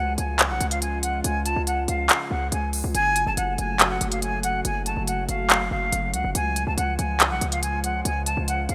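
A half-time trap groove at 141 BPM in F# harmonic minor, with crisp electronic hi-hats and handclaps arriving at 0.2 s over a punchy, heavy 808-style bass, drives this brooding, dark hip hop excerpt, while an airy jazz flute with vibrato and a chiffy attack carries an expressive, delayed melody above a warbling, nostalgic lo-fi pad of detuned chords on C# and F#m treated with chorus, phaser and reverb, the whole cut sitting in a rough home-demo mix with light reverb.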